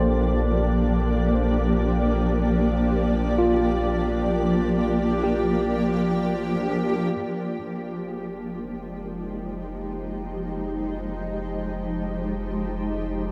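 Bathed in a huge, wet reverb, this peaceful, luminous ambient fragment sets a shimmering, ethereal pad up front, detuned and granular with chorus, holding sustained chords that move from Bb6 to Fm9 at 7.1 seconds, while a worn, slightly out-of-tune tine electric piano plays delayed arpeggios through a combo amp in the background until 7.6 seconds, over a deep, round sine sub bass with tube saturation that fades out and then returns as it and the pad both fade in.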